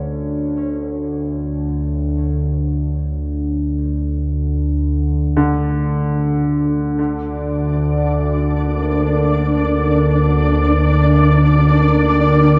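Ominous and desolate, this dark ambient drone drifts in free time, a short passage cut from a longer piece. An analog drone sits up front from the start, fading in across the whole 12.6 seconds with a warm, evolving sawtooth and pulse-wave tone, its pulse-width modulation shaded by chorus and phaser. Alongside it, a clear baby grand piano plays quiet arpeggios carried by delay. At 7.0 seconds a deep, moody analog pad enters with sustained chords under lush chorus, its detuned square, sawtooth and triangle waves reinforced by a sub octave and a moving notch, settling on a Gm/D chord. Just after, at 7.7 seconds, a flickering, grainy granular texture enters up front in a higher register, wrapped in its own built-in reverb. The whole is steeped in a wet cathedral reverb with a dark production that lets every sustained tone hang in the air.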